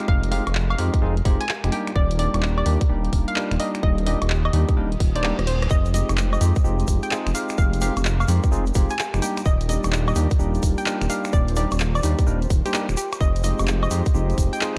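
A dark, close-sounding mix with little reverb opens this short two-step UK garage excerpt in F dorian, skipping along at 128 BPM with a 65% swing on the sixteenths and a moody, skippy feel. Up front, a tight, layered electronic kick sits beside a deep, rumbling detuned saw bass, saturated and sidechain pumping, while a punchy analog drum machine adds finger snaps, handclaps, hi-hat, rim click and woodblock with the air of a large room. A bell-like tine electric piano throws bright, clean stabs through a digital delay, and a hollow, bouncy square-wave pluck carries the melody with chorus, delay and a filter sweep. Beneath it all, a very quiet analog pad holds smooth, soft-edged chords that move between Fm9 and Ebmaj7. At 5.0 seconds a reverse cymbal rises in the background into a drum fill, and from 5.7 seconds a grainy tube shaker joins at low level until the end.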